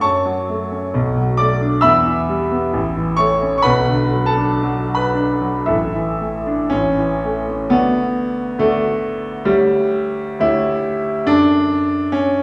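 Heard from further back in a wet recital hall, this brooding, stormy excerpt from a longer romantic character piece features a clear concert grand piano with a deep bass, playing alone in a rubato 2/4 through minor-tinged harmonies before settling onto D-rooted chords in a new section at 7.7 seconds.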